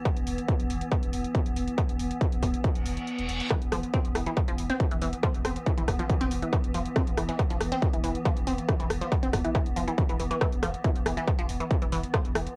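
A straight 4/4 pulse at 139 BPM drives this industrial, peak-time techno excerpt, anchored by a distorted, overdriven electronic kick that sits up front alongside a layered techno kit of hi-hat and rim click. Beneath it, a round sine sub bass holds E1 in the background, tube-saturated, low-pass filtered and pumping against the kick. A swarming, tense drone of detuned sine voices evolves between E3 and B3, granular and soaked in its own reverb. A reverse cymbal rises into a brief break where the kick drops out at 3.1 s, and at 3.5 s a squelchy, resonant sawtooth blip pluck enters with a bright, juicy riff between E3 and C4, colored by phaser, analog delay and ring modulation. The whole piece carries light reverb and the grainy character of a home cassette recording, cut from a longer track.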